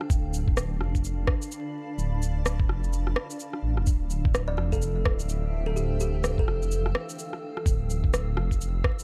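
A muffled, thumpy electronic kick sits up front in this rainy, ghostly future garage excerpt, alongside a deep, rumbling detuned saw bass that pumps under the sidechain and a tape-warm layer of electronic rim click and shaker swinging on the 16ths. A blurred, cloudy granular pad with 12-bit sampler grit and its own reverb sustains the G7/D and Dm11 chords beneath a steady bed of vinyl crackle. Around 4.5 seconds a woody, hollow kalimba rings out through delay, and at 4.6 seconds a breathy, wind-like noise texture drifts in far in the background.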